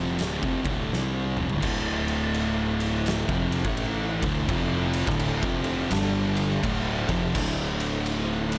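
The recording sits in light reverb and a small room ambience, while the drum kit booms up front with its own big, pumping room sound and a gritty edge. This short cut of ominous, hypnotic stoner and doom metal is in D minor at 84 BPM in 4/4, with a swung eighth-note feel. Two distorted fuzz guitars play a riff in the background, one dark and one warmer, over a growly, punchy fingered bass driven through overdrive and tube saturation. The oversized, low-tuned drum kit enters at 0.2 seconds with a boomy kick, fat snare, dusky crash and ride cymbals and toms, and plays a fill from 0.9 to 1.6 seconds. A very quiet tonewheel organ holds sustained chords beneath, clear and lightly overdriven, with chorus vibrato and audible key click. The harmony rests on D minor, moving to G5 at 5.9 seconds before returning.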